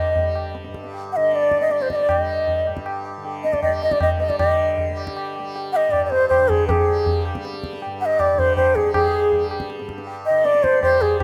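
An airy, close-miked bamboo bansuri with vibrato and tongued notes leads this serene, meditative Hindustani classical excerpt in 3/4 at 158 BPM, speeding up throughout, shadowed by a very quiet, distant, pure-toned wooden pan flute that drops out at 4.4 s and returns at 9.0 s, over a bright, buzzing, shimmering tanpura drone and low-tuned, ringing tabla entering at 0.2 s, set in a lush hall reverb with a rough home-demo mix.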